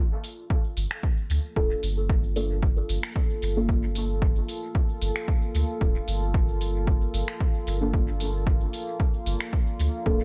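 A digital ambience surrounds this hazy, hypnotic dub techno cut, taken from a longer piece and sitting on a single Gm9 chord in G minor at 113 BPM, with a light 16th-note swing and tuning set to A4 = 436 Hz. An analog drum machine's finger snaps and hi-hat, carrying dub echo in a small room, open the cut at 0.2 seconds, and a dry, punchy electronic kick joins up front from 0.5 seconds, while a round, soft sub bass pumps beneath. Mellow, detuned chord stabs arrive at 1.6 seconds, colored by chorus, phaser, a filter sweep and dub echo, floating over a moody, slow-blooming sawtooth pad that pumps and lingers in reverb to the end.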